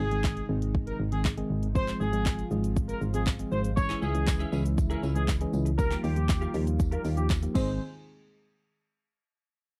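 Summery and euphoric, this dance-pop cut at 119 BPM in Ab major sets a distant, roomy horn section with slapback echo on the melody over a worn, slightly out-of-tune tine electric piano, a shimmering, dark pulse-width pad in the background and a punchy, round FM bass, each of these four pumping with sidechain beneath an up-front deep house kit of deep kick, dark hi-hats, handclaps, shaker and crash, while a bright, twangy twelve-string electric guitar riff and a very quiet, jingly tambourine join at 3.8 s, all in a dry, close 1970s-style studio sound moving from Ab through Fm/Ab, Dbm and Ebadd9.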